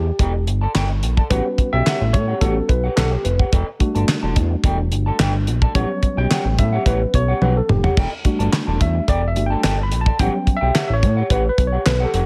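A worn, slightly out-of-tune tine electric piano takes the solo across the whole excerpt, its lightly overdriven tone sounding as if it comes through the instrument's built-in speakers. This is danceable, slick early-eighties boogie funk in E dorian, moving at 108 BPM in a straight 4/4 over a vamp that alternates Em11 and A13. Beneath it, a fat, up-front analog bass blends sawtooth, square and triangle waves with detuning, ring modulation and a filter sweep, giving sustained, mellow low notes with a fast attack. An electric guitar through a small old amp plays a picked, slightly broken-up, lo-fi riff in the upper register, bathed in lush chorus. The damped 70s drum kit sits dry and forward, with a fat snare, tight kick, hi-hat, handclaps, crash and toms under gated reverb, and a drum fill from 7.4 to 8.0 seconds. A small room ambience surrounds the group.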